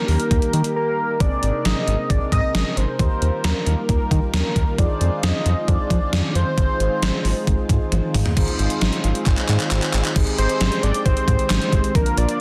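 An overdriven, gated-80s digital drum machine sits up front in this wistful yet upbeat synth-pop excerpt at 134 BPM, its thumpy kick and gated-reverb snare joined by handclaps, hi-hat, crash and toms, with fills at 7.9 and 9.3 seconds. A round, deep analog bass anchors the low end while a fat, detuned analog lead with vibrato carries the melody over brassy, dark synth brass and vintage, organ-like ensemble strings tucked in the background. The harmony moves through chords such as Abadd9, Ebadd9 and Fm7 in a dense, heavily limited mix with light reverb, broken by a brief silent gap at 0.8 seconds.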